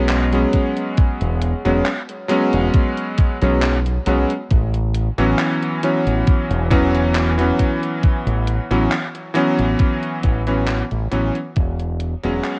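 A bright, clangy electric grand piano and a growling, overdriven fingered electric bass open this faded, woozy vaporwave excerpt together, the piano coloured by analog chorus and tape echo as it moves through E6 and A6 chords at a slow, lightly swung 68 BPM in 4/4. A thumpy, up-front electronic kick and a gated 80s drum machine playing handclaps and hi-hat with gated reverb fill out the groove. The whole piece carries a worn, warbling cassette-tape drift, with light digital ambience, and fades out from 9.2 seconds to its end at 12.6 seconds.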